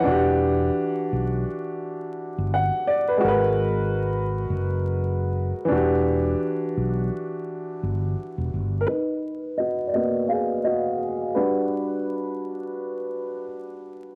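A woody, up-front upright piano carries this nostalgic, hazy lo-fi hip hop excerpt at 85 BPM with a gentle swing, its cassette-tape colour and low-pass filtering sitting over vinyl crackle and moderate reverb, while a round, punchy fretless electric bass supports chords moving from Em9 to G#m9 until 8.8 seconds, after which the piano plays alone through a filter sweep to 14.2 seconds, closing on Gmaj7.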